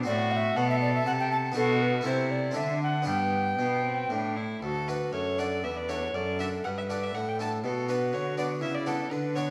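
A close-miked tenor recorder carries the radiant, serene melody with an airy, wooden chiff over a gut-string violin second line, a reedy bowed cello bass and a brilliant, plucked harpsichord in this rubato baroque-style sonata movement in triple time, cut from a longer work and set in a wet recital-hall reverb, with the harmony moving to a new key centre at 4.6 seconds.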